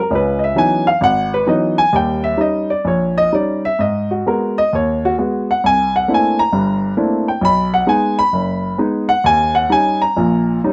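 The rhythm swings at 132 BPM in 4/4, with eighth notes lilting at a 66% swing, though the pulse breathes freely in a rubato manner. This is a brief solo jazz fragment, cut from a longer piece, with a cool, smoky mood across its 10.7 seconds. A single baby grand piano carries everything, sounding warm and natural, with a short sustain that keeps each chord crisp and close. The harmony moves through rich colors such as C#m11, G#m7, C13 and B6 before landing on D#7, spanning the keyboard from F#1 up to B5. Close, detailed microphones place the piano up front, and a light reverb adds just a touch of space, all tuned slightly low to A4 = 438 Hz.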